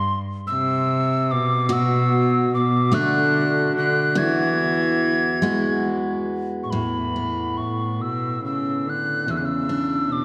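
A hollow wooden whistle and a rich bowed cello open this wistful, pastoral Celtic slow air together, floating in A major at about 47 beats per minute in a loose, rubato 6/8. The whistle carries the melody high up with a pure, mellow tone, a crisp chiff on each attack and gentle vibrato. Beneath it, a single cello plays a second line in its low register, soft-edged and floating from bowing sul tasto. At 1.7 seconds a picked steel-string acoustic guitar enters with bright, full-bodied accompaniment on fresh strings, moving from Bm7 to Eadd9 and then into a second section at 6.7 seconds that opens on Asus2 before turning to E7(no3). A deep church reverb with a long tail surrounds the dark, warm production, and the recording is a short section cut from a longer piece.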